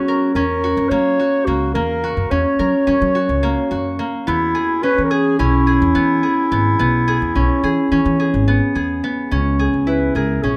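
Ringing, fingerpicked concert harp arpeggios sit up front in this restless yet hopeful piece of contemporary chamber music in an uneven 9/8 metre, moving from F#7 to C#m7 and settling on C#m near the close. Beneath it, a woody, growly pizzicato upright bass with steel strings carries the low end, while a dark clarinet plays the solo melody in a classical style, sounding distant and roomy. The close, detailed recording keeps the harp and bass intimate and present in this short excerpt from a longer work.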